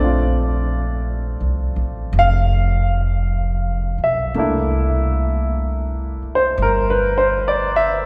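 Tender and romantic, this slow swung jazz ballad excerpt pairs an up-front grand piano playing warm, natural accompaniment chords with a woody, thumpy pizzicato upright bass, both bathed in a lush cathedral reverb that gives the church-like space a long, glowing tail as the harmony moves from Bbmaj9 to C13 at 4.4 seconds.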